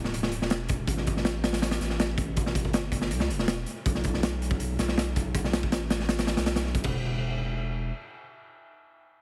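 Opening on a drop, this dark, atmospheric drum and bass excerpt in a jungle vein pairs a raw garage drum kit (punchy kick, medium-tuned snare, hi-hat and crash, gritty and up front with a pumping stone-room sound and a rolled-off top), which plays until 6.9 seconds, with a deep, thick, saturated sine sub bass that carries on to 7.9 seconds, all framed by a dry, heavily compressed radio sound.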